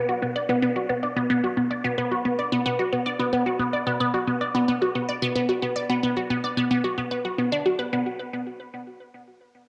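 A juicy, squelchy synth pluck plays alone from 0.0 to 8.2 s, its detuned, bright tone carrying a sub octave and up-front presence as it moves between B3 and D5 through phaser, analog delay and cassette tape color. This ambient fragment, cut from a longer piece, has a cosmic, mysterious mood and a steady, straight feel in four. A wet spring reverb and a homespun cassette recording surround the sound, and the music shifts to a new section at 7.9 s.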